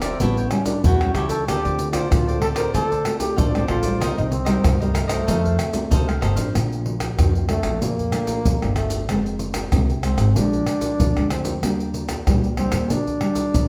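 Samba and choro, joyful and festive and cut from a longer piece, played live in a moderate stone room, where a distant trombone with vibrato carries the melody in jazz style and takes a solo from 6.5 s, the moment the crisp, picked cavaquinho stops, over a fingerpicked nylon-string guitar with old strings, a growly pizzicato upright bass, and up-front maracas, pandeiro, tamborim and deep surdo played with soft hands.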